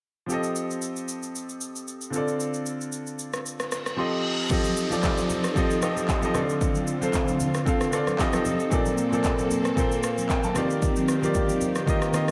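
Relaxed and warm, this amapiano excerpt at a swung 4/4 opens with a bright, brilliant concert grand piano carrying the chords up front, its action noise audible and its bass deep, over a punchy, layered deep house kit of kick, handclaps, rim click and shaker. A reverse cymbal and downlifter sweep in from 3.7 seconds alongside a piano fill and a brief silent gap, before vintage, full-bodied sawtooth string-machine violas with phaser and ensemble chorus settle in behind at 4.5 seconds, joined by compressed, saturated congas with soft hands. The whole mix is soaked in a lush hall reverb, giving the chord movement from F7 and Dm7 toward Bbmaj9 and Ebmaj7 a dreamy glow.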